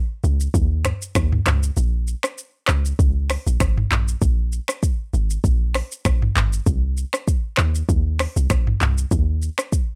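Afrobeats at 98 BPM in 4/4, this short cut from a longer piece sits in Bb minor with a sultry, hypnotic mood and a gentle 16th-note swing. A deep log drum bass carries the low end from Ab1 to Eb2, its round, percussive FM tone given a noise layer, a fast attack and a dark, decaying body. An electronic afro-pop drum kit shares the foreground, blending a deep kick, smooth hi-hats, finger snaps, handclaps, rim clicks, shaker and toms into a polished, produced groove. A break arrives at 1.8 seconds and lasts until 3.0 seconds before the pattern carries on. The bass drops out at 9.5 seconds, leaving the drums to play alone until 9.9 seconds. Both parts sit up front in a close, dry sound with little reverb.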